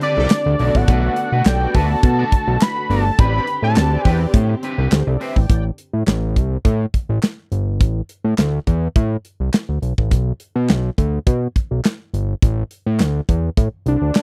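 This excerpt opens with a fat, detuned analog lead carrying the melody up front, joined at once by dark bowed strings, a slightly broken-up twangy electric guitar riff with lush chorus, and a tight acoustic drum kit with handclaps, hi-hat, kick and snare. It's funky, danceable early-eighties boogie funk at 104 BPM in A dorian, moving over a rootless Am11 and Bm7 before settling into plainer Am7, Bm and Am changes. A thick, saturated sawtooth bass enters at 0.2 seconds and drives the groove up front, while mellow, round synth brass with chorus and a filter sweep fills in accompaniment chords. The strings, woody and sul tasto with vibrato, sit in the background, and they drop out with the guitar and brass by about 5.6 seconds, leaving drums and bass to carry the second half. The lead returns only briefly at 13.9 seconds, and the whole mix has a dry, close 1970s-style studio sound with little reverb.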